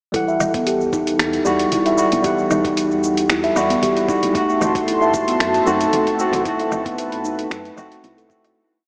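Soaked in a huge, dreamy reverb with a small-speaker sound, this hypnotic, meditative organic downtempo piece in E minor at 114 BPM sets a worn, slightly out-of-tune tine electric piano with 12-bit grit and sidechain pumping over a dark, ringing steel tongue drum that loops a 12-step pattern against the bar, an overdriven soul sampler-style kit of snaps, hi-hat, shaker and woodblock, a soft, thumpy electronic kick, a very quiet bronze singing bowl holding a high note, and a round, woody FM bass in a dotted rhythm, while a detuned sawtooth analog pad enters at 4.4 s, a distant frame drum appears at 4.6 s, and the piece fades out from 5.8 s.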